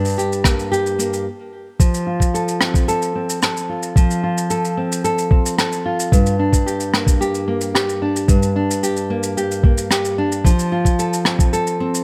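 Hopeful and playful, this folktronica excerpt at 111 BPM in F major sets up-front fingerpicked nylon-string guitar arpeggios with audible finger squeak, treated with a low-pass filter and digital delay, over an airy shaker and rim click and a muffled, thumpy, pitched-down electronic kick in a small room, with a brief stop from 1.3 to 1.8 seconds as the chords move between Gm and F.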